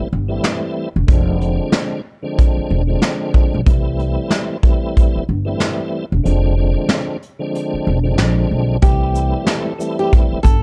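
Dry, dark production gives this confident, soulful boom-bap hip-hop excerpt in C major a close, intimate feel at 93 BPM with a swung 16th-note groove. A woody, thumpy pizzicato upright bass sits up front beside a soft brush drum kit with a punchy kick, while a full tonewheel organ with fast rotary speaker, chorus vibrato and cassette-tape colour moves between C6 and Fm6. The kick drops out from 6.2 to 8.8 seconds, and at 8.8 seconds a bright, fingerpicked nylon-string guitar enters with a brief melody.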